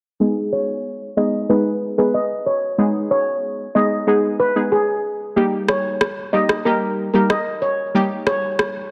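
A punchy, detuned synth brass stab opens this tough, bouncy dancehall excerpt at 93 BPM in 4/4. Its sawtooth edge is shaped by chorus and a low-pass filter, and it enters at 0.2 seconds. Above it, a steel pan carries the melody in a mellow, shimmering tone, played with soft rubber sticks and treated with low-pass filtering and delay. Set in G# harmonic minor, the harmony moves from G#m to D# at 5.4 seconds. A tape-colored electronic rim click joins at 5.7 seconds, sitting up front alongside the brass and pan. A filter sweep runs through the passage, and light reverb lends a small-room ambience.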